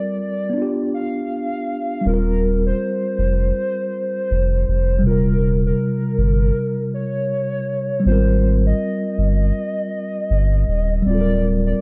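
A deep, saturated sub bass enters up front at 2.1 s beneath a mellow tine electric piano with a cassette-tape tint and a warbling, detuned lead melody coloured by chorus, tremolo and plate reverb, giving this short lo-fi hip hop excerpt a cosy, nostalgic mood over a swung groove and a dark production.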